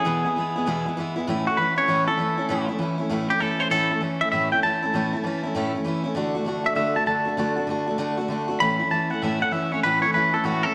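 With a swung 4/4 feel, this upbeat, retro rock clip sets a twangy, compressed electric guitar up front, carrying the melody through spring reverb and tape echo and breaking into a clean solo at 1.3 seconds, over a bright, picked steel-string acoustic guitar moving from E to A, D and back to A, all inside a wet echo-chamber reverb with small-room ambience.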